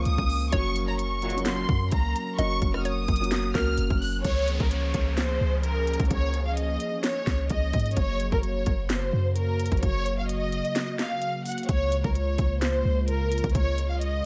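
A lush, bowed violin section carries the melody up front throughout this dreamy, wistful trap excerpt, its expressive vibrato softened by a low-pass filter and trailed by digital delay. Beneath it, a hollow, flute-like pad holds sustained chords with a slow attack and chorus, while a deep, boomy 808-style bass and a crisp electronic drum kit with a hard-clipped kick, sharp snare, handclaps, rim clicks and hats drive a half-time feel. At the start, a bouncy, warbling square pluck traces a second line in the background, and a dark, mellow grand piano adds short-sustain accompaniment; both drop out within the first 4.3 seconds, after a brief brass stab around 1.2 seconds. As the second section begins at 4.2 seconds, an electronic downlifter sweeps through, and later the kick falls silent briefly from 10.8 seconds. The mix is dry and close, with the strings and drums sitting firmly forward.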